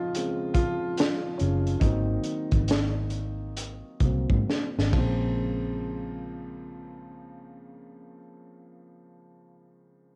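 This R&B and neo-soul excerpt has a soulful, introspective mood, with a swung sixteenth-note feel in 4/4 that gradually slows through the opening 5.4 seconds. A grand piano sits up front with a warm, tape-coloured tone, voicing a rootless Bbm7 that moves to Ab7 and back, and it carries a solo through that first stretch. A crunchy breakbeat kit of kick, snare, hi-hat and ride has a gritty, saturated character: dark cymbals, a high-tuned snare, a punchy kick and a rolled-off top, also with a cassette-tape colour. The kit plays a short fill before stopping at 5.2 seconds. A vintage muted, fingered electric bass enters at 1.4 seconds with a round, amped, foam-damped sound. Small room ambience gives the whole excerpt an intimate, home-recorded cassette feel.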